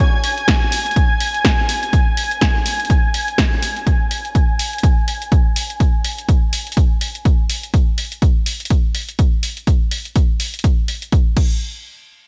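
Cut from a longer piece, this euphoric, uplifting piano house at 124 BPM in swung 4/4 opens with an intimate, bowed chamber violin section holding sul tasto sustained chords from G#5 to G#6 with a soft attack and light vibrato, pumping from the sidechain under a low-pass filter sweep until 7.7 s; a punchy analog drum machine with crash, hi-hat and tape-tinged snare arrives at 0.2 s, and an up-front electronic kick lands at 0.5 s, in light reverb with a bright 1980s-style digital sheen.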